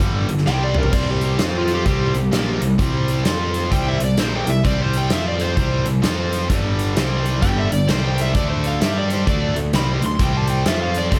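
Blues rock power trio with a southern rock edge, this driving, gritty swung cut at 130 BPM pairs a tight, bright, double-tracked distorted guitar riff moving through G5, C5, F5 and D5 power chords with a round, fuzz-laden picked bass and a huge, punchy arena drum kit with bright cymbals, while an overdriven slide guitar carries the melody from 0.5 seconds with plate reverb and analog delay, its entrance marked by a drum fill, all set in a moderate club-sized room.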